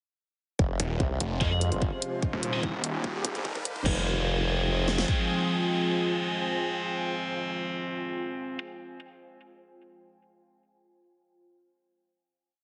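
At 0.6 s a chorused, wobbling formant-sweep bass and a punchy, up-front half-time kick and huge snare open this chaotic, menacing heavy wobble dubstep piece in F minor at 147 BPM, soon joined by a growling, distorted saw bass with chopped phrases answering the other bass, plus closed hi-hat and crash. Across a build-up moving from Fm to Eb, with a filter sweep, a drum fill and a background riser, an evolving, morphing wavetable pad and a mellow, ethereal airy pad rise in with phaser, reverb and sidechain pumping, while a scooped, high-gain guitar adds sparse, echoing chord stabs. At 3.9 s the music settles onto a final Fm chord, the guitar stabs ringing on to 8.6 s inside a heavily compressed, radio-like sound with light reverb.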